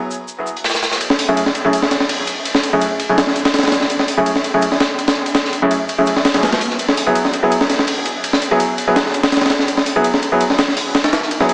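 Atmospheric and nostalgic, this drum and bass excerpt at 166 BPM in F# minor opens with a crunchy, saturated breakbeat kit of hi-hat, shaker and snare sitting in the background, joined at 1.0 s by a pitched-up, sampler-style break with a high-tuned snare, ride and hats up front, while a clear concert grand piano with deep bass plays stabs from 1.3 s through F#m9 and F#9sus4 chords, roughened by vintage 12-bit grit and dub echo, all within a moderate digital room reverb and a heavily compressed radio-like sound with vinyl crackle and a small-speaker tone.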